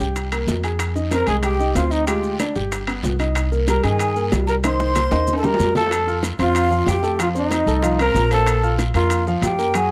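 A gritty, growling trumpet takes the sultry, sophisticated Afro-Cuban jazz melody up front from 1.1 s, joined by a breathy jazz flute second line in the background, over a woody pizzicato upright bass, an intimate dark grand piano with audible action noise, ringing vintage timbales, soft low-tuned bongos, grainy maracas and a raspy guiro in a dry, close 1970s-style small room, with a drum fill from 4.6 s leading into a new section at 5.9 s of this excerpt.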